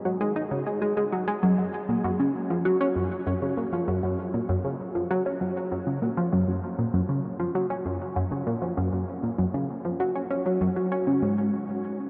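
A tight, driving sequenced synth line takes the solo role in straight 4/4. It plays alone for the whole of this short ambient cut, entering at 0.1 seconds and running to 11.5 seconds. Its tone blends sawtooth, pulse and sine waves with a wave-folded edge and a plucky filter snap, pairing a fast attack with sustained notes, and it sits up front, treated with chorus, phaser and delay. A huge, wet reverb with a long 8.8-second tail gives the line a cavernous space, and the production is dark and warm. The mood is hypnotic and mysterious, a brief slice taken from a longer piece.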